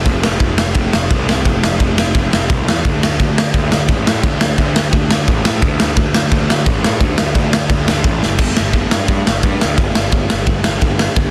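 Dry and dense, this punk rock excerpt is heavily limited, with a loud, in-your-face master that leaves little air around the players. A raw garage drum kit sits up front, its punchy kick, medium-tuned snare, crash and ride cymbals captured in a bright stone room that pumps, giving the kit a saturated, gritty character with a rolled-off top. Beneath it, a fuzz picked electric bass growls in the low register from F1 to A2, its direct, amped tone pushed into overdrive. The straight 4/4 feel drives hard at 173 BPM, carrying a rebellious, rowdy mood from the opening bar. A drum fill at 8.2 seconds launches a new section at 8.4 seconds, and both parts keep charging until the cut at 11.3 seconds.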